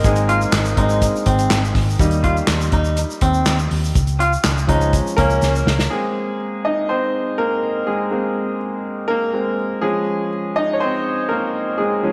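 A bright, intimate upright piano with audible action noise leads this uplifting, anthemic piano-driven pop excerpt in Ab major at 123 BPM, joined through the first 5.9 seconds by a dark, round muted electric bass, a punchy, natural country drum kit with handclaps and a drum fill at 5.4 seconds, a grainy tube shaker in the background and a twangy clean electric guitar riff with spring reverb, before the piano carries on alone in an echo chamber's small-room ambience until 12.1 seconds.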